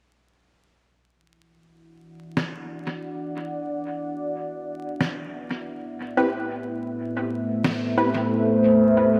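Deep and hazy, this ambient dub excerpt drifts in free time, cut from a longer piece, with harmony moving from Esus2 to Am9 at 5.7 seconds. A dark, moody pad of detuned sawtooth and sine tones with a sub octave swells in slowly from 2.2 seconds, its sustained chords carrying chorus and their own reverb while a filter sweep runs across it. An electronic snare enters at 2.4 seconds, fat, muffled and pitched down with a compressed, sampler-style, tape-softened tone, thrown into dub echo. Filtered dub chord stabs arrive at 6.2 seconds, muted and plucky with a fast attack and short decay, their detuned sawtooth and triangle timbre widened by chorus and trailed by dub echo. The dreamy mix is soaked in a moderate plate reverb and dusted with vinyl crackle, with the pad, snare and stabs all placed up front.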